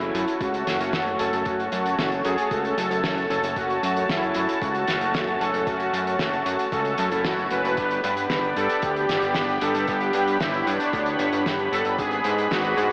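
Cinematic and nostalgic, this short synthwave passage, cut from a longer piece, moves in a straight 4/4 over a harmony that rests on F# minor before shifting to G at 7.8 seconds and a diminished G# near the close. A smooth, detuned supersaw carries the melody with a tape echo trailing behind it, while a lush unison pad holds slow-blooming sustained chords, its chorus shimmer breathing with sidechain pumping. Bold, brassy synth stabs sit further back in the mix, their wave-folded edge wrapped in chorus and an analog delay. Underneath, a fat, thick sawtooth bass anchors the low end, joined by a loose acoustic kit whose hi-hat and fat snare ring in a pumping studio room, and an overdriven, thumpy electronic kick that enters at 0.4 seconds and drops out at 12.1 seconds. The whole mix is soaked in a long plate reverb and filtered to a hazy AM radio sound, giving it a dreamy, faded-memory glow.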